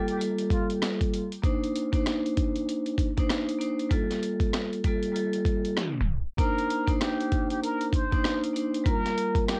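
A distant, breathy plunger-muted trumpet briefly opens this tough, moody boom-bap hip-hop excerpt alongside a ringing, airy vibraphone, joined at 0.1 seconds by a gritty, compressed sampler-style kit with a thumpy kick, high-tuned snare, rim click and hi-hat. After the trumpet drops out, the vibraphone and drums carry a swung cassette-tape haze in light reverb until a tape stop at 5.8 seconds, after which the whispered, wah-wah trumpet returns for a jazz-style solo over the up-front vibraphone and drums.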